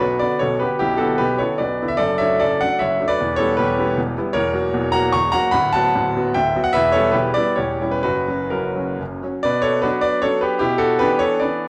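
Capricious and wistful, this romantic classical excerpt is a triple-time dance in B minor with dotted rhythms, moving with free rubato between 118 and 163 BPM. A solo grand piano plays from start to 11.7 seconds, spanning D1 to C#6 with a brilliant, up-front, intimate tone, long sustain and audible action noise. A moderate recital hall reverb surrounds the instrument, and the sound of worn, old cassette tape adds warbly pitch drift, while the music turns to a new section at 9.4 seconds, landing back on B minor.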